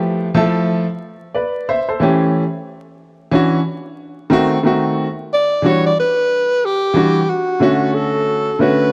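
Dark, vinyl-crackled production steeped in moderate plate reverb frames this smoky, mellow hip hop fragment at 91 BPM with a swung 16th feel, where a clear, smooth, vintage-toned grand piano with short sustain carries jazzy chords from Fmaj9 through A7, Dmaj9 and D#dim7 to Em9 and Dmaj7 across the full 8.9 seconds, and a breathy, intimate alto saxophone enters at 5.3 seconds with a whispered subtone, soft attack and vibrato for an up-front, jazz-style solo melody.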